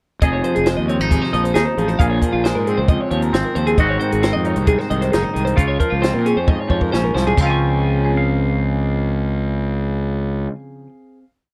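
A growly fuzz fingered electric bass drives a syncopated, overdriven riff under a twangy electric guitar's fingerstyle rolling arpeggios, a clean, compressed twelve-string electric guitar ostinato with warbly pitch drift, and a compact cocktail drum kit with a high-tuned snare, punchy kick and dark cymbals playing a pop groove. This bright, intricate math rock and midwest emo piece at 134 BPM in Db major moves through Fm7, Bbm9, Ab7 and Dbmaj7, with a drum fill ending at 7.4 seconds before the guitars and bass hold a final chord in a dry, close 1970s-style studio sound.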